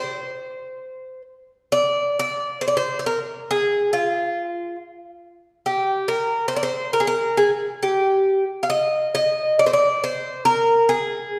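A wet, lingering reverb with a decay of 1.6 seconds fills this recording, made in a church or concert hall, and it surrounds a single instrument placed up front. This is a short cut from a longer fado piece, mournful and passionate, in Eb major and 2/4 time at 68 BPM, though the pulse is played rubato. An acoustic Irish bouzouki carries the whole passage alone from 0.0 to 11.4 seconds, its picked double strings giving a metallic ring within a range from F4 to F5. The tuning sits slightly below standard pitch, at A4 = 436 Hz. A brief opening phrase gives way at 1.7 seconds to a longer second section that runs to the end of the clip.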